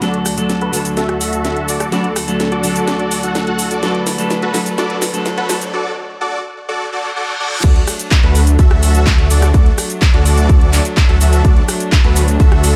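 A straight 4/4 pulse at 126 BPM drives this triumphant, uplifting festival progressive house passage in D major, with a house kit of cracking snare, metallic hats, cabasa, handclaps, rim click and crash playing a fill under a huge, filter-swept supersaw riff with gritty sampler texture and delay. Earthy bowed strings hold sustained chords, and a dark, picked clean electric guitar with spring reverb and delay accompanies until 5.7 seconds. From 3.2 seconds, a very quiet riser and reverse cymbal lead through the brief break that arrives at 5.7 seconds toward the drop. At 7.6 seconds a punchy, up-front kick and a thick, lush detuned saw bass on D with chorus land, with the supersaw, strings and bass pumping against the kick.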